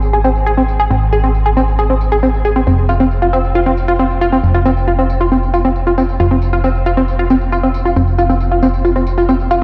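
Euphoric and soaring, this short uplifting trance excerpt moves in a straight 4/4 feel, with the chords shifting from Ab to F5 at 2.7 seconds. A tight, driving sequenced synth carries the arpeggios up front from 0.1 seconds, its nasal sawtooth and pulse-wave tone detuned and shaped with a filter pluck, thickened by chorus and echoed by analog delay. A filter sweep runs across this arpeggio sound for the whole passage. Underneath, a punchy, round FM bass sits up front with a fast attack and a dark, decaying body. An overdriven electronic tambourine, low-pass filtered, sits in the background. The dreamy mix is soaked in a lush hall reverb that gives the sound a spacious glow.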